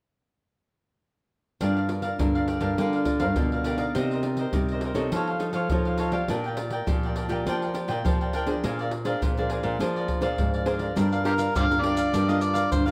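A gritty, overdriven harmonica steps up front at 11.3 s with a short jazz-style solo of scooped notes, tongue slaps and light vibrato, closing this nostalgic, lively samba and choro excerpt. Underneath from 1.6 s, a crisp picked cavaquinho and two fingerpicked classical nylon-string guitars, one woody with old strings and the other full-bodied, carry the accompaniment and bass through chords such as Gm7, Cm9 and Faug7. A tight surdo, pandeiro and maracas, played with soft hands and heard as if in a small room, keep a straight 4/4 pulse, the band sitting in a moderate large-studio reverb.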